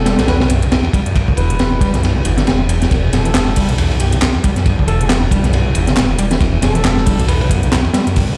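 Funky and swaggering, this short breakbeat clip pairs a crunchy, punchy acoustic break kit with a lighter layer of metallic garage hats and handclaps, under a thick, swirling phased saw bass on a single E minor chord, a squelchy, screaming acid riff drenched in distortion, chorus and tape echo, and a mellow, distant alto saxophone melody with light vibrato and an old-record haze, all ringing through a stone room as if blasted over a big sound system.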